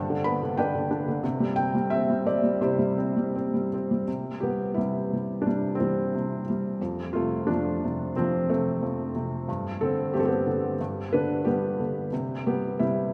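Hopeful and tender, this short classical piece for solo piano moves in a gently rubato 4/4, cut from a longer work. A felt-muted upright piano carries everything alone, spanning F2 to B5 with a mellow, intimate tone, short sustain and the soft clatter of its action audible up front. The hush of the thin felt sits inside a long cathedral reverb with a 4.5-second decay, so each muted note blooms into a church or concert-hall space. A brief opening statement gives way to a second pass of the same theme at 4.1 seconds. The harmony drifts from G to C, then touches F and a suspended G before settling back on C near 12.1 seconds for a warm, resolved close.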